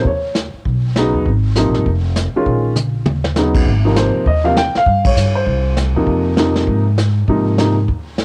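This short piece of a longer recording has the homely, small-room character of a cassette recorded at home. It's a sophisticated, warm-hearted jazz piano trio in Ab major, swinging briskly in 4/4 at 199 BPM. The baby grand piano carries the melody, sitting warm, present and up front, over rich chords such as Abmaj9, Bbm7, Ab69 and Fm7. The upright bass is plucked, with a woody, warm tone and steel strings. The brushed drum kit sounds dark and smooth, with a punchy kick, a rolled-off top and its own tape colour, and it plays a fill at 2.8 seconds. A new section begins at 3.7 seconds, and the whole trio hits a band accent at 5.0 seconds.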